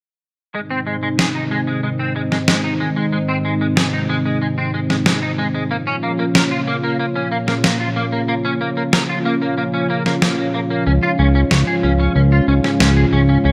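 Cinematic and nostalgic, this synthwave excerpt at 93 BPM sets a lush, warbling unison pad with vintage 12-bit sampler grit and a filter sweep under a bright, twangy clean electric guitar riff bathed in ensemble chorus and tape echo, while an up-front electronic snare with gated reverb plays as the chords move from Ab through Bbm to Db, where a fat, saturated analog bass enters at 10.9 seconds.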